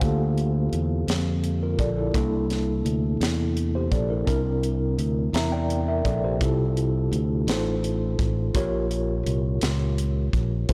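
A mellow, clean tine electric piano carries the harmony up front, its tone heard as if through its own built-in speakers, moving from Gm9/D to C13 at 2.1 seconds, then through Fmaj9/C and F7/A before settling on Bbm6 at 8.6 seconds. This short slow gospel passage, cut from a longer piece, sits at 56 BPM in a straight 6/8 and feels reverent and hopeful. A fingered electric bass plays low and direct beneath it, with a warm, close presence. A crisp fusion drum kit with an airy, polished studio-room sound adds hi-hat, a high-tuned snare and a punchy kick. Light reverb surrounds the trio, but the recording is blown-out and overdriven, giving the gentle material a gritty, saturated edge through its roughly 10.7 seconds.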